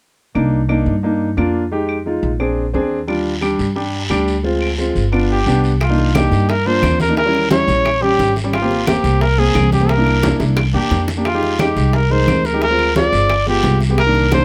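A smooth, vintage grand piano opens this fiery, sophisticated Afro-Cuban jazz excerpt, joined almost at once by a dark, woody pizzicato upright bass up front and band-limited claves tucked in the background, with a raspy, distant guiro arriving at 3.1 s. At 5.3 s a warm solo trumpet takes the melody up front, its vibrato, scooped notes and smooth top set in plate reverb. At 5.8 s the piece moves into a new section over rich jazz chords, as tight, high-tuned bongos and ringing, low-tuned congas join in the background, followed later by a brief fill.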